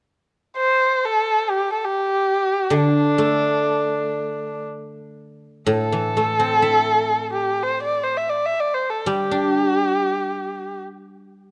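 In free time and the G zhi mode, this short, pastoral yet festive Chinese traditional chamber passage opens with a dark, woody bowed erhu singing the melody with vibrato and portamento from 0.6 seconds, joined at 2.7 seconds by a ringing, silvery guzheng played with fingerpicks in accompaniment, both up front in a close, detailed recording with light reverb.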